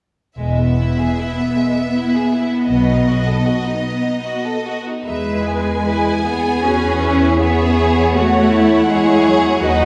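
A focused, vibrato-rich violin section sings a lyrical melody over a second violin line with a distant, even tone, smooth viola accompaniment, a lush cello section and a lightly vibrating double bass section in this serene, slow romantic movement for string orchestra in E major, a rubato 3/4 at around 70-82 BPM, cut from a longer piece and heard from further back in a reverberant recital hall.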